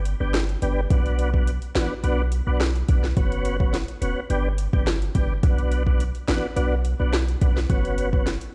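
Dancehall at 106 BPM in B minor with a tough, sultry mood, built on a deep, boomy 808-style sine bass with a fast attack, a gritty 12-bit afro-pop drum kit with a deep kick, sharp snare, metallic hats and rim clicks sitting up front, and a smooth, clean tonewheel organ colored by chorus vibrato, a slow rotary speaker and sidechain pumping, all moving through G, B minor and F#sus4 in a bare stone room that sounds played over a big sound system.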